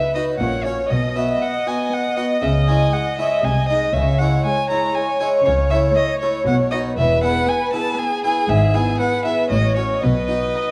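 A focused, rich solo violin sings the melody up front from the opening, shadowed by a barely audible violin section doubling it and a second violin section on a vibrato-laden inner line, while an airy, full harpsichord enters at 0.2 s and a clear, intense double bass section and a distant, warm cello section take up the bass at 0.4 s beneath a very quiet, bright viola section, all in a brilliant, festive baroque-style concerto movement at 119 BPM in 3/4 that settles into E major from 5.5 s, heard through a dark production with vinyl crackle and a wet scoring-stage reverb in a short excerpt cut from a longer piece.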